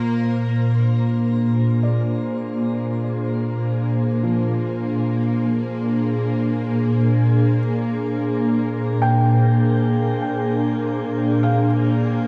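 A glassy FM pad opens this serene, weightless ambient piece, holding sustained chords up front with ensemble chorus and its own reverb, while a nasal, string-like bowed drone fades in on a single held note with vibrato. From 1.8 seconds, a soft, felt-muted upright piano fades in with delayed arpeggios, set in the background. A long, moderate shimmer reverb surrounds the sound as it drifts on one unchanging chord.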